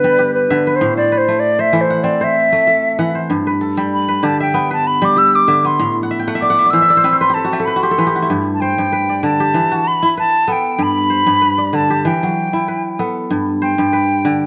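West African traditional music, joyful and flowing, moves at 96 BPM in G major with a light swing, as the up-front, hollow concert flute carries an airy melody with vibrato over fingerpicked, ringing kora arpeggios. The flute takes a solo through the first 8.3 seconds, and the crisp kora adds a fill from 6.0 seconds before the second section begins. Close, detailed microphones capture both instruments in a moderate recital-hall reverb, in this short cut from a longer piece.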